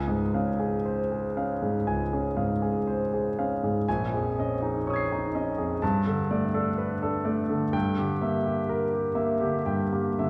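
A clear concert grand piano plays alone from the first moment, its deep bass and long sustain ringing through the wet reverb of a recital hall heard from further back in the room, while the audible noise of the action keeps the sound intimate. This serene, luminous fragment of impressionist classical music drifts in a loose, rubato 4/4 through Dbmaj7, Bbm11, Gadd9 and Gm6 before it is cut off at 10.3 seconds, part of a longer piece.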